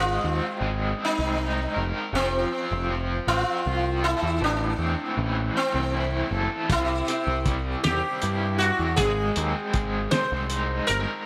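Psychedelic rock in a slow 6/8 at 53 BPM, this trippy, hypnotic fragment pairs a buzzing, shimmering sitar melody with slapback echo against a crunchy, double-tracked overdriven guitar riff pulsing with tremolo and a growling, round overdriven bass, moving through G#add9, F, Am and C before a muffled, cloth-damped drum kit with a fat snare and tight kick enters at 6.7 seconds, all set in a light small-room reverb.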